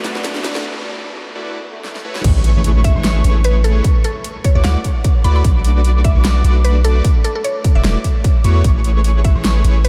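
Lush and playful, this future bass excerpt runs at 150 BPM in 4/4 with a half-time feel and a light 16th-note swing, set in A major. It opens on a short build-up where a bell-like tine electric piano and a shimmering ambient pad are barely audible beneath a fat, detuned sawtooth polysynth riff with a warbling vintage character, tape echo and sidechain pumping. A deep, sine-toned 808-style bass sits up front through the whole passage, while a dubstep kit supplies drum fills with a huge snare, metallic hats and crash, and background risers and swells lead into the drop at 2.2 seconds. There a punchy, tape-warm electronic kick arrives, an airy, dreamy lead adds soft arpeggios high in the background with chorus, vibrato and cassette coloring, and from 2.8 seconds a woody, round FM pluck carries the melody through a diffuse ambient delay. The chords move from Bm7 and E9sus4 to Amaj9 and D69, all within light reverb and a digital ambience.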